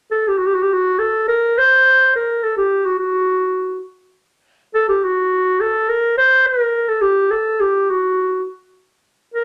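Klezmer with a soulful, festive mood: a lone clarinet plays throughout this short piece cut from a longer work, running from 0.1 to 9.4 seconds in a straight, moderate 4/4. The clarinet sits up front with a mellow, classical-style tone and a smooth top, carrying the line between F#4 and C5. A moderate club reverb gives it a modest sense of room around it.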